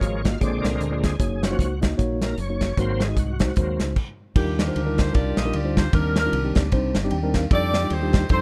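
Soulful and hopeful, this uptempo gospel passage, cut from a longer piece, swings at 152 BPM in 4/4 and settles into Eb major from 4.4 seconds. A bright, shouting tonewheel organ opens with a solo of sustained chords, lightly overdriven with key click, chorus vibrato and a slow rotary speaker, before a stop at 4.0 seconds. Beneath it, a mellow, clean tine electric piano plays accompaniment through its built-in speakers, and a round, punchy fingered electric bass sits dark and low. The soul drum kit is up front, with dark cymbals, a medium-tuned snare and a tight kick, its top rolled off in a small room. From 4.4 seconds an edgy, punchy saxophone section takes the melody with light vibrato over lush chords such as Ebmaj9 and Cm9, and the electric piano adds a brief fill at 6.9 seconds. The whole has the rough, intimate feel of a home demo.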